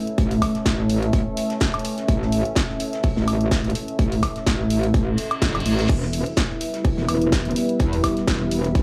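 Light reverb and a digital ambience frame this swaggering, aggressive bass house excerpt, which has a swung feel and is led by an up-front, metallic, saturated wobble bass and a punchy layered electronic kick. A big-room dance kit adds crash, hi-hat, woodblock and a hard-hitting snare, while a very quiet soul kit tucks a fat, rolled-off snare and hi-hat underneath. Two pads pump with the sidechain alongside the bass: a bright, detuned sawtooth pad with a filter swell sits in the background together with a deep, dark ambient pad with a sub octave, and the harmony moves from Aadd9 to Em at 5.9 s, as a reverse cymbal that entered at 5.1 s comes to an end.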